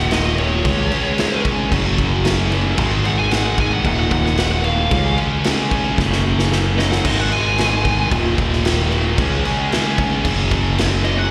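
A straight 4/4 pulse at 112 BPM drives this anthemic, cathartic alternative rock excerpt, where a dark, high-gain lead guitar solos with slapback echo over three bright, distorted rhythm guitars (a double-tracked fuzz guitar, a thick fuzz guitar and a scooped high-gain guitar) riffing in the background, a growly, up-front fingered bass, and a raw, gritty garage drum kit of punchy kick, medium-tuned snare and crash that fills from 6.0 to 7.0 seconds, all heard as a live gig through the venue's PA with recital hall reverb over the chords Eb, Db, Gb and Ab.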